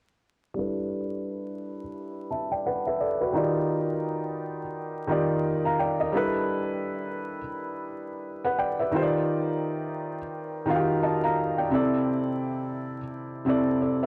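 A soft, mellow felt-muted upright piano plays alone, intimate and up front, through cassette tape, low-pass filtering and analog delay in this cosy, dreamy hip hop excerpt at 86 BPM with a swung 16th-note feel, drifting between G6/9 and Ebmaj7 before settling on C6/9 at 11.7 seconds, with a filter sweep on the piano until 6.1 seconds and a dry, gritty small-room sound flecked with vinyl crackle.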